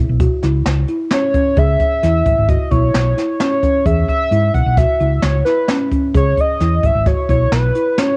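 Recorded at home on cassette with small-room ambience, this driving, intricate progressive instrumental fragment moves in a straight 5/4 at 131 BPM, where a dark, round hollow-body fingered bass and an up-front brushed jazz kit with a boomy kick sit beneath woody soft-mallet folk marimba arpeggios, while from 1.1 seconds a shimmering, retro pulse-width lead carries the melody with chorus, vibrato, analog delay and cassette-tape colour over chords of E5, C#m7 and E6.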